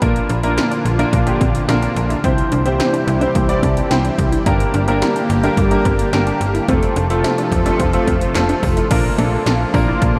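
A bright, nostalgic synth-pop passage at 108 BPM opens with a clear, polished baby grand piano up front, a snappy FM bass with a metallic attack, a very quiet detuned sawtooth pluck playing arpeggios, and 80s electronic drums with a punchy kick, a gated snare, metallic hi-hats, handclaps and crash cymbal. A thick, chorused and phased unison pad enters at 0.5 seconds to hold sustained chords in the background over a Bb, C, Gm, F progression, while the piano plays a fill at 3.4 seconds. The mix is soaked in a huge ambient reverb for a dreamy feel, and it shifts to a Bbadd9 chord at 8.9 seconds before the excerpt is cut off.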